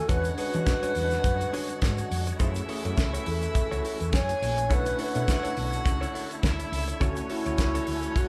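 Driving and sultry, this disco excerpt moves at 104 BPM in 4/4 with a light swing on the sixteenths, set in F# minor and cut from a longer piece. A mellow, airy alto flute carries the melody with vibrato and tongued notes, close-miked, while a rich chamber string section with a reedy, gut-string, period-style tone bows a second line alongside it. A worn, slightly out-of-tune tine electric piano, lightly overdriven through its built-in speakers, and a clean, compressed electric guitar recorded direct fill out the accompaniment, with a bright tonewheel organ holding chords in the background through chorus vibrato and a fast rotary speaker. Underneath, a dark, round hollow-body bass plays with punch against an up-front 70s drum kit whose fat snare and tight kick sit dry with a rolled-off top, and a grainy tube shaker stays in the background. The harmony moves from E13 to F#m7, Bm11 and Dmaj7, and the whole band sounds as if playing live together in one large studio with a moderate reverb.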